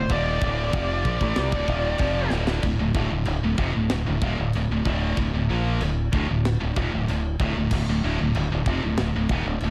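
A straight 4/4 heavy metal groove drives this relentless, heavy fragment cut from a longer piece, built on a bright, scooped, double-tracked high-gain guitar riff up front and a growly fingered electric bass played direct. A distorted, high-gain lead guitar with digital delay carries a brief melody until 2.3 s, where a fill from the tight acoustic drum kit, with its medium-tuned snare, tight kick, china and crash cymbals, leads into the next section. The studio ambience carries audible lossy compression artefacts.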